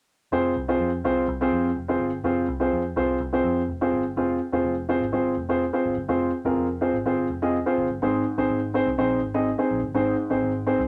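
Urgent and driving, this short clip of uptempo 1960s-style soul sets a woody, up-front upright piano against a dark, round, punchy foam-muted electric bass that sits lower in the mix, all in a small room's moderate reverb, with the harmony moving to a new chord at 8.0 seconds.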